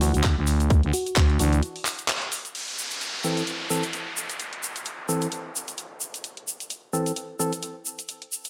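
A thick, growling FM bass with tube saturation and sidechain pumping drives this aggressive, bouncy bass house fragment at 130 BPM, with swung 16ths in A dorian, alongside a tight, up-front electronic kick, a garage kit of bright hi-hats, handclaps and crash cymbal in studio reverb, a grainy acoustic tube shaker, a brief sparkling bell-like FM electric piano with chorus, tremolo and dub echo, and a hollow, dark organ stab with dub echo that carries on after the bass stops for a break at 1.6 seconds and takes a filter sweep from 2.5 seconds as a downlifter enters and the harmony moves from Dadd9 to Am.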